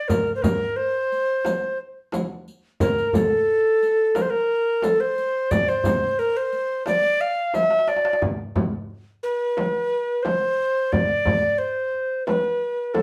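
A wet studio room heard from further back frames this soulful, hypnotic Turkish makam ensemble at 89 BPM in straight 4/4, where a breathy, reedy alto recorder with a woody chiff and plate reverb carries the melody up front over a crisp, deep metal-shelled darbuka, a vintage, band-limited frame drum and a close, dry riq with dark jingles that stops at 8.0 seconds, as a drum fill from 7.5 seconds leads into the next section at 8.2 seconds.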